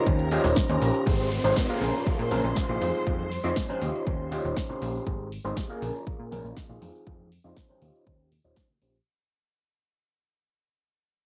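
Joyful and feel-good, this filtered disco house excerpt in straight 4/4 opens on a drop before fading out under a long filter sweep from 1.1 seconds. An up-front, overdriven reed electric piano carries the chords through a combo amp with phaser, 12-bit sampler grit, sidechain pumping and cassette tape colour, while a lush, bowed violin section with vibrato holds sustained chords until 5.1 seconds and a funky, plucky analog bass pumps beneath. A punchy kick re-recorded in a large room, a tape-warm drum machine with snare, hi-hat, rim click and cabasa, very quiet band-limited shaker and congas, and a background downlifter from 1.1 seconds fill out the light reverb of a home cassette recording.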